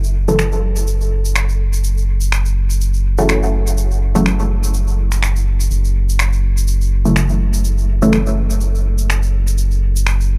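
A lightly swung 124 BPM pulse in 4/4 drives this hypnotic, meditative dub techno excerpt in F# minor, with overdriven electronic finger snaps arriving at 0.4 s over a grainy, bright egg shaker. A round, deep analog bass holds F#1 up front, while muted, detuned sawtooth chord stabs on F#m7 pluck and decay through chorus, phaser and dub echo until 8.2 s. The dark production sits in light digital ambience.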